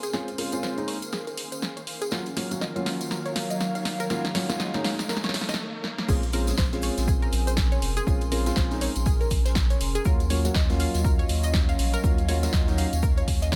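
A smooth, warm deep house excerpt with a lightly reverberant sound opens on a build-up, where a silky string machine holds sustained chords and a warbling, nostalgic tape-like pad drifts in the background, both breathing with sidechain pumping. An analog pluck plays nasal, detuned arpeggios through chorus, phaser and digital delay while a filter sweep moves across it. Felt-muted upright piano stabs, intimate and natural, sit above a punchy analog drum machine fill of crash, hi-hat and snare, with a close, jingly tambourine and a very quiet riser rising in from 0.6 seconds. After a short break, the drop arrives at 6.1 seconds as a round sine sub bass and a punchy electronic kick enter, joined by a very quiet gated 80s kit adding airy hi-hat, shaker and fat snare. The harmony rocks gently between Bbm9 and Ebm9 throughout, and the piano drops away at 12.8 seconds as the rest carries on.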